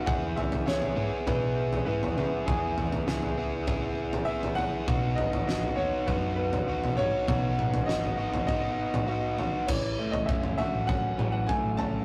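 Upbeat and jangly, this indie rock excerpt moves at 100 BPM in E major, with an up-front overdriven electric guitar riff and a loose acoustic drum kit, fat snare, punchy kick and dark cymbals in a pumping room, driving over chords of E, B and A6. A bright, woody upright piano carries the melody with audible action noise and long sustain, while a round, hollow-body fingered bass sits dark in the background. At 9.7 s a very quiet, twangy twelve-string electric guitar joins with a clean, compressed riff, all captured as a rough rehearsal-room recording with tube saturation and a small room's reverb.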